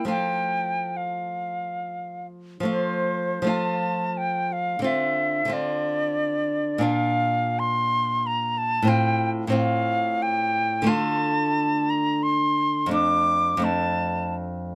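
A silver concert flute carries the melody up front, its airy, vibrato-laden tone and soft attack lending a yearning, elegiac voice to this romantic duo in 3/4, moving with a rubato feel between 68 and 95 BPM. Beneath it, a small, bright nylon-string guitar is fingerpicked as accompaniment, sitting close in a dry, detailed recording. The harmony rests in F major before turning to D minor at 10.9 seconds, and the flute falls silent at 14.3 seconds just ahead of the guitar in this fragment of a longer piece.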